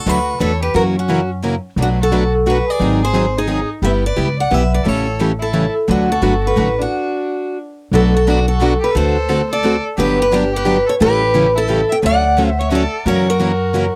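A bright, boxy parlour-style steel-string guitar carries the picked melody up front in this charming, lively gypsy-jazz swing in 3/4, with a nasal, focused violin singing a smooth, vibrato-laden second line beneath it. Two more picked steel-string guitars supply the accompaniment, one plugged in with audible finger squeak and the other sitting in the background, while a thumpy, woody upright bass on gut strings plucks the low end up front. The band stops together from 6.9 to 7.9 seconds before the second section, and the dry, close 1970s-style studio sound keeps this fragment of a longer piece intimate.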